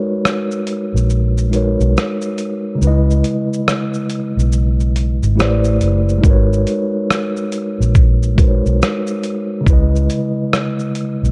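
A mellow tine electric piano opens this hazy, melancholic lo-fi hip hop excerpt, its clean chords softened by a low-pass filter and heard as if through built-in speakers, moving from G#m11 to C#m7 and Am11 before circling back. At 0.3 seconds a dusty soul sampler-style drum kit enters with hi-hat, rim click, shaker and a thumpy kick, compressed and gritty with vintage 12-bit sampler crunch and a tape-like character. A vintage muted fingered electric bass joins at 0.9 seconds, its foam-muted tone dark and round. The groove leans into a swung sixteenth-note feel at an unhurried pace. All three parts sit up front in a dark, warm production, lightly touched by digital ambience.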